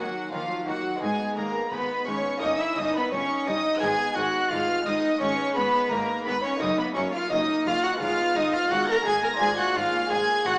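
Stormy and driving, this baroque-style concerto movement sets a rich bowed violin section and an expressive solo cello with vibrato and portamento up front on the melody, while a focused second violin line, a delicate fingerpicked gut-strung lute, a lush viola section, a smooth cello section and an expressive double bass section sit in the background, all heard through a wet recital-hall reverb with a small-speaker sound.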